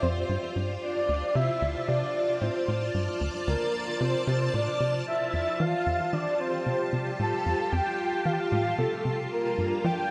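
A tight, punchy sequencer bass riff drives a straight 4/4 pulse through this slice of ambient, sequencer-driven space music, its dark, filter-plucked tone sitting up front with lush chorus and analog delay. Above it, a string machine holds sustained full-ensemble chords, vintage and bright with a slow attack and long release. Its harmony moves from Csus4 to Dm, then to Fadd9 at 5.1 seconds and Gm7 at 9.3 seconds. A breathy, flute-like synth lead carries the melody between A4 and A5, soft-edged with vibrato, ensemble chorus and analog delay. Deep in the background, a very quiet pulsing gated texture of detuned unison tones adds a faint tempo-synced glow, while a wet plate reverb gives the cosmic, luminous piece its spacious room, cut from a longer work.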